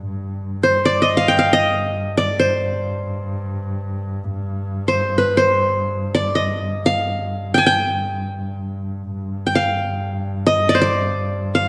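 Arabic maqam ensemble music in free time, soulful and longing, where a single bowed double bass holds a clear, focused G2 drone with vibrato from the start while an up-front qanun, plectrum-plucked and bright-edged with its triple strings, enters at 0.6 seconds to carry the melody between B4 and Ab5+25c, all set in a moderate scoring-stage reverb in this brief cut from a longer piece.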